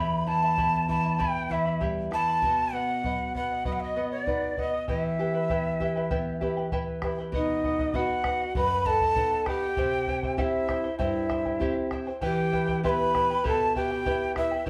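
Andean folk at 98 BPM in E minor, festive yet wistful, with a breathy, vibrato-laden cane quena carrying the melody up front over an airy, reedy pan flute second line with crisp chiff, shimmering double-strung charango and fresh-stringed, fingerpicked nylon guitar, while a round, dry bombo enters at 0.6 seconds, all captured as a live band in a small room with a wet studio reverb.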